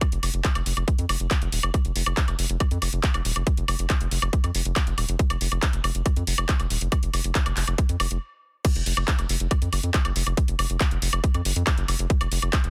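Psychedelic trance at 139 BPM in a straight 4/4, hypnotic and driving, with a tight, overdriven electronic kick and a layered drum kit of bright hi-hats, handclaps, crash cymbal and woodblock pushed up front with its own overdrive. A round, deep analog bass with a fast attack and dark, wave-folded tone sustains beneath them from Eb1 to F2. The mix is dry, dense and heavily limited, and after a brief stop at 8.2 seconds the drop arrives at 8.6 seconds and runs to the end of this cut from a longer piece.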